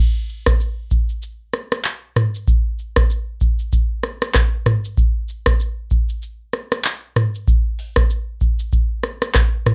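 A rough home-demo mix with light reverb and a faint mains hum frames this sultry, smooth afrobeats fragment at 96 BPM in 4/4, where a booming analog drum machine enters at 0.3 s up front with a deep kick, metallic hi-hat, handclaps, rim click, shaker and toms, its tape-warm electronic sound riding a gentle swing on the sixteenths.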